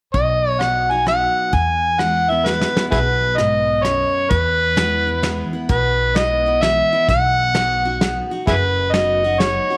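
An up-front, gritty overdriven harmonica with light vibrato, scooped notes and tongue slaps leads this sunny, down-home honky-tonk waltz in B major at 130 BPM with a swung 3/4 feel, over bright, full-bodied picked acoustic guitar, woody pizzicato upright bass and a dark, smooth brush kit whose drum fill at 2.5 seconds ushers in a new section, all set in a moderate plate reverb.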